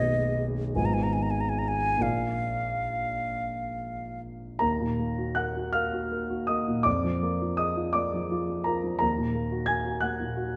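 A rubato 6/8 lilt at 45-60 BPM in dotted quarters carries this yearning, melancholic romantic classical fragment in Eb minor, where a close, airy silver flute sings the melody with a straight tone and soft attack until 4.2 s, leaving the mellow grand piano, deep in the bass and placed up front, to continue its accompaniment alone through chords like Ebm and Bb7/F until 10.6 s, all bathed in a lush scoring-stage reverb and a dark, warm production.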